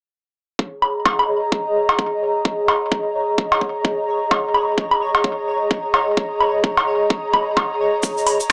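This short minimal techno excerpt runs at 129 BPM in 4/4 with a 59% swing on the sixteenths, its punchy electronic kick entering up front at 0.6 seconds alongside a faint pulsing gated texture that sits in the background on a single high note, detuned and chorused with its own built-in reverb. Woodblock and cowbell join at 0.8 seconds, overdriven and analog in character, re-recorded in a small room. An airy, breathy pad arrives at 0.9 seconds, soft and warbling with a vintage, detuned quality, a noise layer, slow attack and chorus, pumping with sidechain compression. Near the close a grainy, bright acoustic tube shaker slips in at 8.0 seconds, followed by a house drum kit with finger snaps and metallic hi-hats. The mood is sparse and clinical, set in moderate studio reverb with a small speaker sound.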